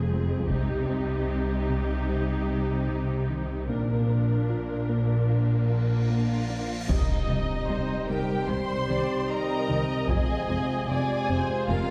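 A straight 4/4 pulse at 75 BPM drives this tense, vast cinematic cue, a hybrid of orchestra and electronics in C minor, cut from a longer piece. The opening build-up sets lush, intense bowed violas over a woody double bass section and an even cello line in the background. A mellow, warbling, tape-like pad with chorus sits behind them, and a very quiet, dark, round pluck plays arpeggios throughout. A close, dry taiko ensemble struck with heavy sticks punctuates the opening. A huge cymbal swell rises from 6.0 seconds into a dark impact at 6.9 seconds, where the taiko return and the second half begins. Entering just before, at 6.1 seconds, a focused violin section carries the melody above a more distant second violin line, while from 6.9 seconds horns and trombones in classical style hold sustained chords in the background, all set back in a spacious scoring-stage reverb.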